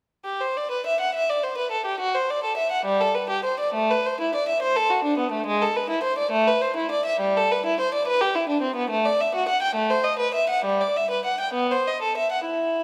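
A lone bowed violin with a reedy gut-string tone and light vibrato carries a flowing, dance-like baroque-style suite movement in 6/8 at 64-73 BPM, played up front in period style with rubato, moving from G major into E minor at 7.2 s within a moderate concert hall reverb before the fragment breaks off at 12.8 s.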